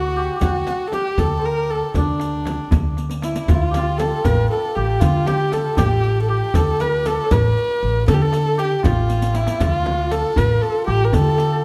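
A dark, woody kamancheh leads this longing, hypnotic Persian modal ensemble piece in D dastgah homayun, its close bowed line rich with vibrato and portamento over a shimmering, ringing santur, a growly pizzicato upright bass with a thumpy steel-string attack, and a background bed of tight, dry tombak, deep frame drum and saturated riq jingles, moving in a straight 6/8 at 78 BPM under light reverb, with drum fills at 3.0 s and 9.1 s and a new section arriving at 3.5 s in this fragment of a longer work.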